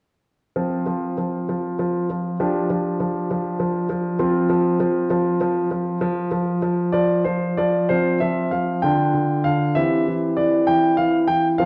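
A dark, reverberant recital-hall sound surrounds a clear, up-front concert grand piano, whose deep bass and long sustain ring naturally into the room. This elegant, playful classical-period sonatina moves in 6/8 at 65 BPM with free rubato, the solo piano playing from 0.6 to 11.7 seconds and turning to a new section at 7.9 seconds, where the harmony shifts to Dmadd11 and then C/E. The passage is cut from a longer piece.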